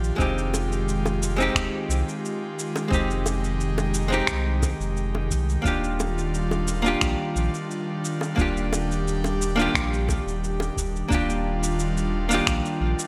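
An airy, breathy pad with chorus and vintage 12-bit sampler grit holds sustained Fm9 and Ebmaj9 chords over a dark, clean archtop guitar with digital delay, a round sine sub bass, a deep electronic kick, gritty, overdriven shaker and finger snaps with gated reverb, and tight, high-tuned bongos in the background, giving this relaxed, wistful sunset chillout excerpt at 88 BPM a bright 1980s-style digital sheen in a lush hall.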